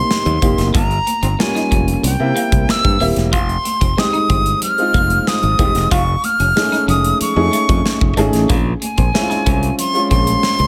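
Breezy and urban, this short excerpt from a longer piece is polished 1980s jazz-funk pop at 93 BPM in a straight 4/4, tuned slightly sharp of standard pitch. A bright silver concert flute carries the melody up front from the start, its airy tone marked by vibrato, a crisp attack and an unsteady character. A clear, somewhat boxy baby grand piano with subtle chorus plays the accompaniment through chords moving from Cm7 and Gm7b5 to C7, Fm7, an altered F7 and finally Bbm9. The modern studio drum kit brings a punchy kick and medium-tuned snare bathed in gated reverb, while very quiet, high-tuned congas add soft-handed, vintage-sounding color beneath. A growly, punchy fingered electric bass sits up front from 0.3 seconds, and a clean, picked electric guitar with lush chorus plays a riff in the background from 0.4 seconds, all set in a light small-room ambience.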